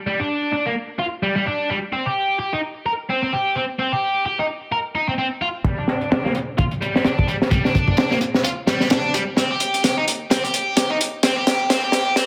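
Energetic and swaggering, this breakbeat fragment opens with a dark, biting, double-tracked overdriven guitar riff through a low-pass filter and delay, until at 5.6 s a gritty, crunchy acoustic drum kit with a punchy kick and high-tuned snare arrives up front alongside a very quiet, woody pizzicato upright bass, driving a filter-swept build-up that ends in a drum fill from 9.4 s.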